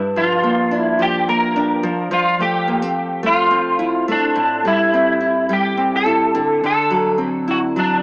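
A dry, gritty hardware recording with a small-speaker sound and a touch of light reverb frames this wistful, lonely indie pop excerpt in G dorian, tuned to A4 = 443 Hz. At 107 BPM in a straight 4/4, a fingerpicked nylon-string guitar carries the accompaniment from the first moment, its warm classical tone up front, with audible finger squeak and a subtle chorus and vibrato effect. At 0.2 seconds an electric guitar through a small old amp takes the melody, bright, twangy and slightly broken-up, its picked lo-fi line sitting between D4 and Bb4 and colored by ensemble chorus and tape echo. Both guitars stay prominent, the electric sitting a little louder than the nylon-string part. Over the roughly eight seconds of this single section, the harmony moves from Gm7 to Fmaj13, then Am7 and D9, leaving a lonely feeling as the cut ends.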